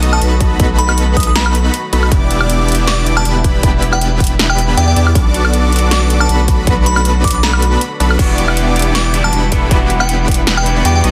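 Future bass at 158 BPM in E minor, this lush, emotional excerpt moves in a half-time feel with a light swing on the sixteenths, cycling through B7, Em7, Bm7 and back to Em7. A saturated sub bass sits deep and up front, and together with a punchy layered electronic kick and a big-room dance kit of snare, metallic hi-hat, ride, crash and woodblock, both drum parts set in a small room ambience, it drives the track. A huge, detuned supersaw carries the riff, thick and heavily compressed with vibrato, while a glassy, crystalline FM bell plays the melody with chorus and dub echo. Behind them, an airy, dreamy lead spins mellow arpeggios through chorus and tape echo, and a very quiet chamber string section holds sustained chords with a reedy gut-string tone. At 8.2 seconds a twangy, slightly broken-up picked electric guitar joins as accompaniment with tape echo, and the sub, supersaw, bell, lead and guitar all pump against the sidechain in a dense, heavily limited modern master.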